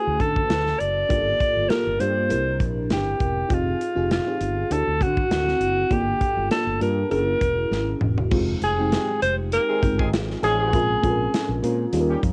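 Polished 1980s jazz-funk pop in F dorian, this short cut from a longer piece moves at 100 BPM in 4/4 with a light sixteenth-note swing and a nocturnal, urban mood. A breathy alto saxophone carries the melody up front, its subtone and scooped notes giving it a vintage, jazz-style voice. Beneath it, an FM electric piano layered with a soft pad supplies lush, dreamy chords through a rich chorus, while a fretless electric bass adds a dark, round low end, also touched with chorus. A modern studio drum kit with bright cymbals, a punchy kick and a medium-tuned snare drives the groove and plays a fill from 7.7 to 8.3 s leading into the second section. At 9.7 s a mellow horn section joins as a second line, its octave doubling and light vibrato trailed by tape echo. The piano, sax, drums and horns carry a cassette-tape grain, and the whole piece sits in light reverb with the intimate character of a home recording.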